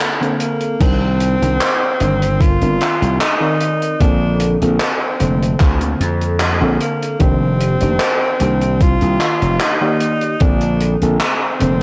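Vaporwave at 75 BPM in Bb major, faded and dreamy, cut from a longer piece: a round, chorused FM electric piano and a dark, rolled-off soul drum kit with crash, handclaps, hi-hat, 12-bit sampler grit and gated reverb open a brief break before a close-miked tenor saxophone enters at 0.4 seconds with a clear jazz-style solo full of vibrato and scooped notes. At 0.8 seconds a bright, overdriven slap bass and a thumpy, sampler-style electronic kick push up front as the chords drift from Cm9 through Bbmaj9 and F13sus4, with analog delay trailing the piano and saxophone. The whole excerpt carries a cassette-tape haze and light studio reverb, and the kick drops out at 10.6 seconds.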